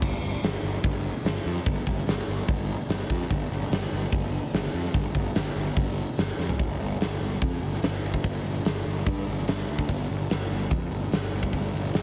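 The recording has a heavily compressed, radio-ready sound shaped by multiband compression, with a light reverb around it. This is a heavy, driving hard rock passage in 4/4 at 146 BPM with a straight feel, cut from a longer piece. A huge arena drum kit plays throughout, acoustic and up front in a pumping hall room, with bright cymbals, a medium-tuned snare, a punchy kick, hi-hat, crash and toms. A picked electric bass, overdriven and thick with fuzz, sits up front alongside the drums, running between G1 and G2 for the full twelve seconds. A drum fill at 6.4 seconds leads into a new section at 6.6 seconds, which runs to the end.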